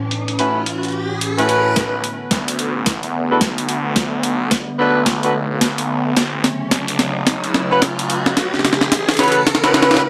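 A warbling, nostalgic pad opens this funky, playful glitch hop excerpt, holding dark, detuned chords with chorus, its own reverb and sidechain pumping, while a riser sits in the background. Gritty, pitched-down sampler-style drums come in almost at once, putting a compressed, high-tuned snare and hi-hat up front with a swung sixteenth-note lilt. From 0.4 seconds a mellow horn section plays tight, jazz-style stabs with light vibrato and a smooth top, treated with delay, a low-pass filter and sidechain pumping, and a filter sweep runs over the horns from 1.8 seconds. At that point a thick, swirling detuned saw bass enters, bright and saturated through phaser and overdrive, alongside a knocking, layered electronic kick kept in the background, as a build-up and drum fill carry the passage forward. The mix sits in a small room with an overall low-pass softening, and the harmony moves from A6 to Bm7 and back to A6.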